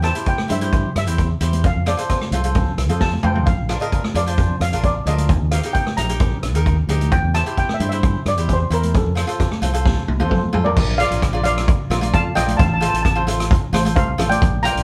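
Calypso excerpt at 132 BPM in Bb major, carefree and sunny, with a shimmering lead steel pan played with medium rubber sticks carrying the melody over crisp picked cavaquinho, a round, punchy fingered electric bass, an up-front street-band drum kit with a boomy kick, high-tuned snare and dark cymbals that fills at 3.0 and 9.9 seconds, and very quiet bright congas entering at 0.4 seconds, all captured as a band playing live in one room with moderate reverb.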